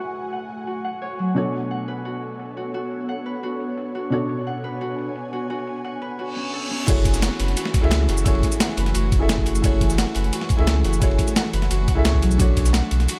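Intimate and mellow, this soulful, melancholic liquid drum and bass excerpt at 174 BPM in F# minor opens with a baby grand piano with audible action noise and dub echo, an ethereal, detuned pad with ensemble chorus and sidechain pumping, and a ringing, fingerpicked Celtic harp under a filter sweep, joined at 0.2 seconds by a gritty sampler-style breakbeat kit of cabasa, hi-hat, snare and crash, before a background reverse cymbal and downlifter at 6.3 seconds lead into a drop at 6.9 seconds, where a deep, up-front sub bass with tube saturation, a thumpy electronic kick and a dark, crunchy breakbeat kit with ride sitting in the background arrive over F#m9 and Bm9 chords.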